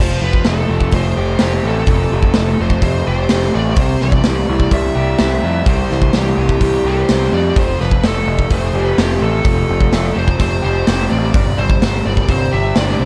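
A dark, distorted lead guitar carries a bluesy melody through analog delay, sitting over a crunchy, double-tracked rhythm guitar riff softened by subtle chorus. A growling, bright picked bass with overdrive plays from the start, and a big acoustic drum kit, with a punchy kick and medium-tuned snare, enters at 0.2 seconds; together they drive the straight 4/4 rock feel up front. The chords move from Fadd9 to C and back before landing on Gsus4, and the small room and dark, warm production give this hazy cut from a longer shoegaze and dream pop piece a blissful glow.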